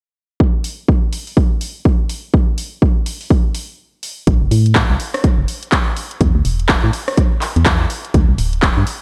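A punchy, overdriven electronic kick drum leads this deep, hypnotic deep house excerpt at 124 BPM in A dorian, with a 16th-note swing, joined almost at once by a house kit of handclaps, hi-hat and rim click that is up front, layered and given a gated reverb, both drum parts re-recorded in a large room. After a short break at 3.8 seconds, a hollow, dark, organ-like FM bass enters at 4.3 seconds, its fast attack and decay colored by tube saturation and sidechain pumping. The mix is dry and has a bright 1980s-style digital sheen.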